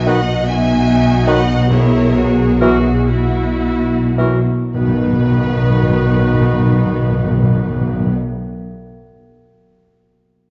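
Built on a low B from lush bowed cellos and focused double basses with up-front, calf-headed timpani, this serene, tender slow romantic orchestral movement in B major and 6/8 moves with rubato at 32-52 BPM, slowing through its first 4.7 seconds as rich, vibrato violins carry the melody over a second violin line, background violas, bright ringing harp arpeggios, a clear close-miked oboe, a mellow roomy clarinet, a very quiet pure flute ensemble, a distant bassoon and hushed sustained French horn chords; the harmony shifts from B to F#7 over B at 1.7 seconds and returns to B, bathed in wet scoring-stage reverb within a dark, warm production.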